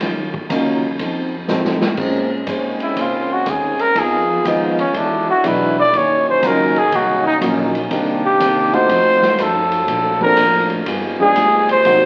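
Big band swing in Bb minor at 122 BPM, this brassy, swinging excerpt sounds like a very old 78 rpm record, crackle and all, bathed in a wet large-room reverb. A dark, clean hollow-body guitar, a woody, thumpy pizzicato upright bass and a swinging drum kit with a punchy kick start together, joined at 0.5 s by a long-sustaining upright piano, and a drum fill leads into the next section. At 2.0 s a tight, vintage trombone section begins holding vibrato-laden chords in the background, and at 2.8 s a breathy trumpet steps up front with a lightly vibrating solo over moody minor and altered dominant chords.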